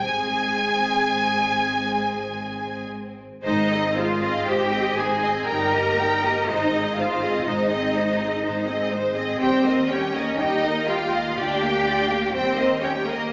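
Up-front, focused violins sing a serene, lyrical melody in this slow romantic movement for string orchestra, cut from a longer piece and swaying in a rubato 3/4, while a second violin line, bright and intense violas sitting close, smooth and distant cellos, and even double basses fill out a lush, bowed, vibrato-rich texture within a recital-hall reverb.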